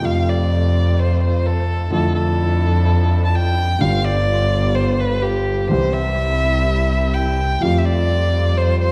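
A dramatic, tense tango excerpt in F major at 126 BPM with a rubato feel opens with all four parts at once: an up-front bowed violin playing a warm, expressive solo line with vibrato and portamento, over a biting, nasal double bass carrying the low end. Behind them, a dark, mellow baby grand piano with audible action noise supplies the accompaniment, while a focused studio string section adds bowed stabs through an analog delay. The chords move from F through Dmadd9/F, G7 and C to Fadd9, all set in a moderate concert hall reverb with a dark production.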